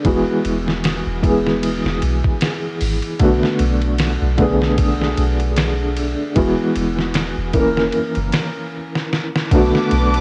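A swung, unhurried trip hop groove rides on a gritty, compressed drum kit with a thumpy kick and fat snare sitting up front, capped by a drum fill at 8.9 seconds, while a soft, round 808-style bass drops deep sine notes underneath. A felt-muted upright piano carries the chords with an intimate, mellow touch, colored by tremolo, tape echo and a cassette tape sheen, giving this smoky, brooding excerpt its homespun haze. At 9.5 seconds a lush bowed string section slides in with vibrato and portamento, roughened by 12-bit sampler grit, as the harmony settles back onto Bm7.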